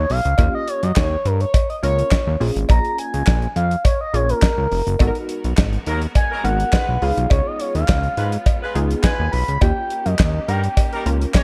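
Early-eighties boogie funk at 104 BPM with a slick, funky mood, this excerpt from a longer piece features a smooth, expressive synth lead soloing throughout, its sawtooth tone colored by a moving notch, vibrato, chorus and slapback echo over a fat, detuned analog bass with filter sweeps, a dry 70s drum kit with tight kick, fat snare, handclaps and hi-hat, a punchy polysynth comp and a metallic cowbell in the background. At 5.0 seconds a lush, bowed symphonic string section adds distant sustained chords, and at 5.9 seconds a roomy pop-style horn section enters with a second line. The changes move from D#7 and A#m7 to G#m9 and C#7 in a dark production set in a small room.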